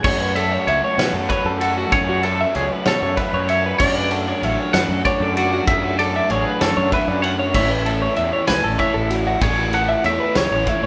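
A twangy, scooped electric guitar carries the melody with tremolo, floating over a clean twelve-string electric guitar whose picked arpeggios ring through analog delay in this wistful, intricate excerpt of math rock and midwest emo, set in 6/8 at 64 BPM. Beneath them, a double-tracked crunchy overdriven guitar riffs in the background, a growly fuzz bass adds weight, and a loose indie drum kit with a fat snare, punchy kick and dark cymbals sounds distant and roomy. The band plays live in one room with a wet, large studio reverb as the chords move from F#m7 to Dmaj7 at 3.8 s and on to A at 7.6 s.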